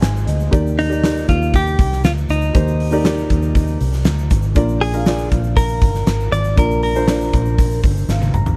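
This hopeful, anthemic slice of piano-driven pop features a huge arena drum kit, its punchy kick and fat snare sitting up front in a pumping hall sound, with toms and hi-hat filling out the groove and a drum fill closing things at 8.1 seconds. Beneath it, a vintage muted fingered electric bass gives a dark, round, foam-muted low end that is equally forward in the mix. A felt-muted upright piano carries the accompaniment with a soft, boxy, intimate tone, its action noise audible, and it adds short fills at the very start and again from 7.8 seconds. From 0.8 seconds a clean electric guitar, recorded direct and compressed, picks out a bright melody in a middle register over chords moving from Ab to Ebmaj7 and on to Bb. A very quiet, grainy tube shaker glimmers in the distance, while the overall sound stays dry and close, as befits a short cut from a longer piece.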